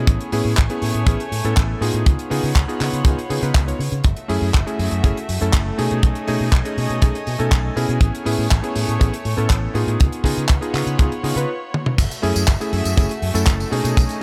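A straight nu-disco groove with a sleek, cosmic mood is driven by a tight, up-front kick and a small-room funk kit of hi-hat, handclaps, tambourine, toms and crash, under a bright, amped fingered bass with an envelope filter, a clangy, vintage electric grand piano with chorused unisons and sidechain pumping plus delay, and a distant, reedy violin section holding bowed chords, before a short break and drum fill at 11.7 seconds lead into a drop at 12.0 seconds in this fragment cut from a longer piece.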